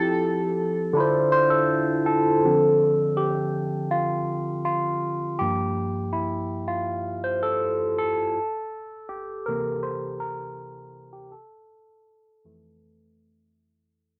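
In a straight 4/4 at 81 BPM, this moody, sensual R&B excerpt in D minor, tuned to A4 = 437 Hz, opens with a bright, buzzing, plectrum-plucked sitar whose shimmering sympathetic strings carry cassette tape colour and analog delay, sounding only until 2.0 s, while a barky, clean, up-front tine electric piano with phaser and tape character moves through Fmaj7, Dm9, Dm7, Gm7 and C7 and takes a solo from 2.4 s as a filter sweep and fade-out run to the close at 14.2 s, all set in a light-reverb home cassette recording with a low-pass softness.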